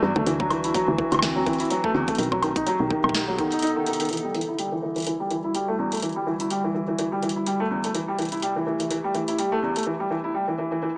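Swung at 125 BPM in 4/4, this melancholic, eerie IDM excerpt in E minor sets a felt-muted upright piano's soft arpeggios, roughened by 12-bit sampler grit, low-pass filtering and digital delay, up front over a warbling, nostalgic pad of chorused sustained chords. A round, woody FM bass and a tight electronic kick drop out by 3.6 seconds. A booming analog drum machine with crisp snare, metallic hats and woodblock carries on through a fill at 3.9 seconds into a section where a filter sweep shapes the piano across chords from D9 and B7b9 to Em9 and Am7, all heard through a moderate echo-chamber reverb and a small-speaker sound.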